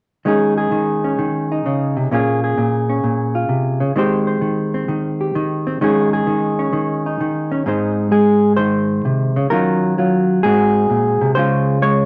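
Solo jazz with a playful, relaxed swing at 130 BPM in Ab major, carried entirely by a hollow-body electric jazz guitar that sits up front from 0.2 to 12.1 seconds, fingered and reaching from Ab2 up to Db5. Its tone is dark and clean, bathed in a wet studio reverb. The harmony moves from Eb7sus4 and Bbm7 into a new passage at 7.7 seconds, where Ab, Ebm9 and Ab7 lead to Dbmaj7 in this fragment cut from a longer piece.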